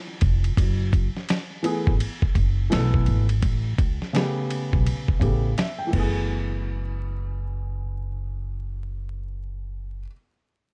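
Jazz-hop at 84 BPM in F# minor with a nocturnal, mellow swing, this short cut opens on gritty, overdriven sampler-style drums with a thumpy kick and a woody, growly upright bass. A dark, intimate baby grand with audible action noise joins at 1.6 seconds over F#m11 and A9 chords and adds a fill at 5.2 seconds, just before the drums stop at 6.1 seconds, all wrapped in small-room ambience and vinyl crackle.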